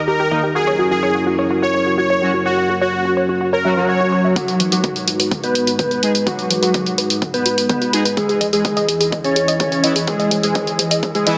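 Melodic techno at 126 BPM in G# minor, this driving, melancholic excerpt opens with a deep, moody analog pad holding sustained chords under lush chorus, joined almost at once by an up-front supersaw melody, smooth and detuned, passed through a low-pass filter and tape echo. A tight sequenced synth spins mellow, plucky arpeggios above it, while fat, nasal analog brass stabs sit in the background with chorus and vibrato, every one of these parts breathing with sidechain pumping. At 4.4 seconds the music moves into a build-up. An eerie, inharmonic FM bell enters with a warbling phaser line, a filter sweep moves across the supersaw, and a drum fill arrives. An overdriven, deep electronic kick and a tape-tinged analog drum machine playing congas, hi-hat and toms come in up front, the chords shifting from F#7 to G#m7 and then Emaj7 at 8.2 seconds. A huge ambient reverb surrounds the dense, heavily limited master.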